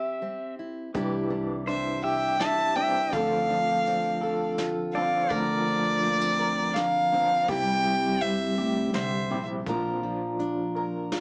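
A small-speaker sound with moderate studio ambience frames this peaceful, nostalgic acoustic folk piece at 83 BPM in 3/4, cut from a longer performance. A warm, fingerpicked, plugged-in steel-string acoustic guitar sits up front from the start. At 0.9 seconds it is joined by arpeggios from an electric guitar through a small old amp, its tone dark and slightly broken-up with tremolo, and by a soft brush kit with a tight kick and medium-tuned snare. Pizzicato upright bass adds a woody, growly low end, while a bright, twangy pedal steel with volume swells carries a second line until 9.5 seconds. The bowed fiddle takes the melody from 1.7 seconds, dusky, close and prominent, with light vibrato, as the harmony moves through Cadd9, Dm7 and Bbadd9/D back to C before settling on Bbadd9.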